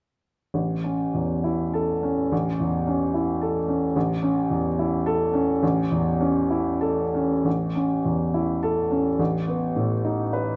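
Classical romantic character piece for solo piano, hopeful and passionate in mood, moving in a flexible rubato with a two-beat metre. A baby grand piano carries the whole fragment from 0.5 seconds to 10.6 seconds, its tone clear and open and placed up front, ranging from deep bass notes up into the middle of the keyboard. The music rests on a major chord through its opening section, then shifts into a new section at 7.5 seconds, where a dominant seventh harmony over the same bass arrives at 9.2 seconds. A moderate recital hall reverb gives the sound a natural, airy space around each phrase. The fragment is a short cut from a longer piece.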